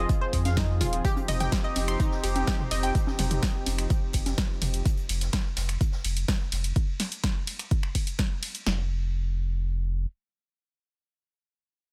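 A straight 4/4 progressive house groove at 126 BPM drives this emotional, bittersweet excerpt. It is led by an up-front, overdriven deep house kit with a deep kick and punchy snare, a second overdriven layer of finger snaps, hi-hat, ride and snare, and a very quiet acoustic jazz kit of hi-hat and snare, with tape-tinged analog congas and toms pumping in the background. A thick, saturated sub bass and a smooth sawtooth pad pump beneath Fm7 and Cm/F chords, while a glassy, crystalline wavetable pluck spins detuned arpeggios through chorus and dub echo until 2.9 seconds; the drop runs to 8.7 seconds, around which point the chords fall away and the drums stop, and the bass carries on to 10.1 seconds.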